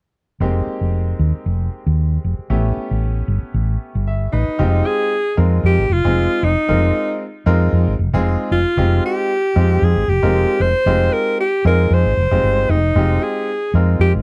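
This intense, nocturnal slice of electric jazz fusion opens with piano and fretless bass together, set in 4/4 with a light sixteenth-note swing. The bass sits up front with a dark, round, hollow-body tone, while the brilliant concert grand comps further back, its chords carrying a deep low end and a natural ring as the harmony moves from Fm11 to A9. A short piano fill at 3.8 seconds leads into the next passage, and the alto saxophone takes the melody at 4.3 seconds. The sax is forceful and punchy, played in a jazz solo style with vibrato and scooped notes, and it stands up front beside the bass over a settling Fm9. The dry, close sound has little reverb and gives the recording the feel of a 1970s studio session. It is cut from a longer piece.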